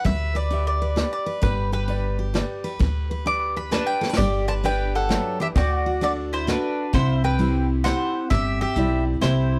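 A swung waltz at 131 BPM in 3/4 sets a sunny, easygoing honky-tonk and classic country groove, with thumpy pizzicato upright bass on gut strings up front and a soft brush kit heard distant in a small room, its cymbals dark and its top rolled off. The picked mandolin carries the melody with double strings and a slapback echo, taking a solo through the opening 4.2 seconds until a drum fill at 4.0 leads into the next section. A jumbo steel-string acoustic guitar with fresh strings and audible finger squeak picks a full-bodied accompaniment. A bright upright piano enters at 0.5 seconds in the background, brilliant and intimate, with audible action noise and long sustain. A clean, twangy pedal steel guitar, played with fingerpicks and volume swells, sits in the background holding sustained chords. The harmony moves from G to D and then C in a dry mix, and this passage is cut from a longer piece.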